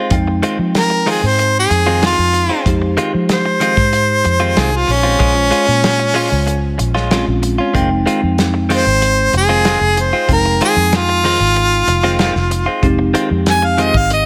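A small room with light reverb frames this mournful, smoky excerpt of straight-eighth soul blues in F minor at 94 BPM, moving from Fm7 to Bbm7 and back. A clear, close-miked harmonica carries the melody up front from 0.8 seconds, with light vibrato and scooped notes in a jazz style, over a bell-like tine electric piano with lush chorus and clean, compressed electric guitar stabs recorded direct. Underneath, a round, foam-muted vintage fingered bass and a dark soul drum kit with punchy kick, medium-tuned snare, hi-hat and a rolled-off top carry the groove.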